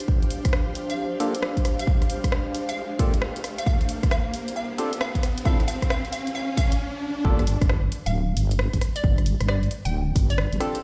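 A swung two-step garage groove at 134 BPM rides a punchy, up-front electronic kick and a house kit of hi-hat and rim click, while a deep, wobbling sawtooth bass anchors the low end beneath soulful, late-night chords moving from Gm9 through F6 and Dm9. Over the first 7.2 seconds a riser builds alongside an ethereal, airy pad with sidechain pumping and ensemble chorus, and percussive organ stabs with tape echo and a filter sweep, before a brief break at 6.8 seconds gives way to the drop on G5. A hollow, bouncy square-wave pluck carries the melody with analog chorus and tape echo, and the whole excerpt sounds as if played through a big sound system in a bare stone room.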